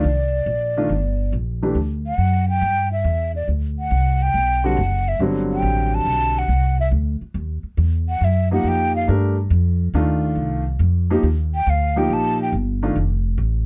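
A breathy, hollow concert flute, clear upright piano with audible action noise and woody pizzicato upright bass open this cool, spiritual swing jazz excerpt at 139 BPM over suspended chords; the flute takes a close, soft-attacked solo from 1.8 seconds as the piano drops out, returning at 4.6 seconds alongside the up-front bass in a dark mix with light reverb.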